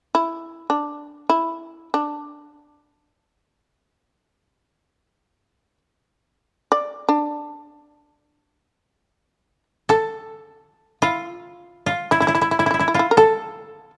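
Unfolding in free time, this short passage of Japanese traditional chamber music, taken from a longer piece, has a meditative, austere mood. The shamisen carries the melody from 0.1 seconds, its plectrum-plucked, fretless tone sounding percussive and buzzing as it moves between D4 and D5. At 9.9 seconds the koto enters with a second line in a narrower span from E4 to A4, played with fingerpicks and giving a dry, woody color. Both acoustic instruments sit up front, captured by close, detailed microphones with light reverb that keeps the sound intimate. The shamisen's line ends just before the koto's closing notes at 14.0 seconds.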